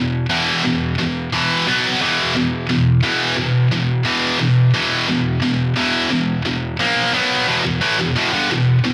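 A bright, double-tracked high-gain electric guitar plays alone and up front for the full 8.9 seconds of this heavy, epic metal fragment at 88 BPM in straight 4/4, its picked, distorted E5, B5 and A#5 chords spanning E2 to B3 through analog delay and cassette tape coloring, all set in a modest booth ambience on a home cassette recording.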